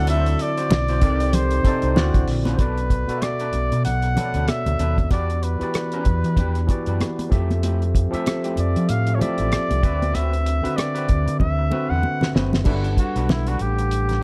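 A clear flugelhorn carries the melody with vibrato through this smooth, romantic slice of lush 1970s-style soul at 95 BPM in G major, played with a 16th-note swing and taken from a longer piece. Beneath it, an overdriven fingered electric bass sits up front, while a barky tine electric piano, lightly overdriven through a combo amp, supplies the accompaniment across the whole passage. A jazz-style horn section adds stabs in the background only until 2.3 seconds, and a twangy, slightly broken-up electric guitar played through a small old amp repeats a picked riff with a warbly pitch drift. The cloth-damped, thuddy drum kit is dry and dark, with a fat snare, tight kick, rim clicks, hi-hat and dark crash, joined by high-tuned, damped congas tucked behind it. A drum fill from 11.4 seconds leads into a flugelhorn solo at 12.7 seconds over a Gmaj7 chord, all inside a small room with a dark, warm production.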